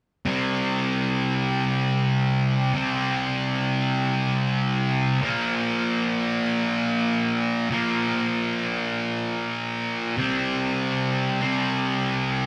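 A slow 6/8 pulse at 48 BPM in dotted quarters carries this brooding, cathartic rock excerpt, cut from a longer piece, where a thick fuzz guitar takes the solo from 0.3 to 12.5 seconds. The picked, double-tracked guitar sits up front, its bright, distorted tone ranging from Bb2 to C4 as it moves between C5 and Bb5 power chords before returning to C5 at 10.2 seconds. A moderate studio reverb gives the sound the feel of a band playing live in one room.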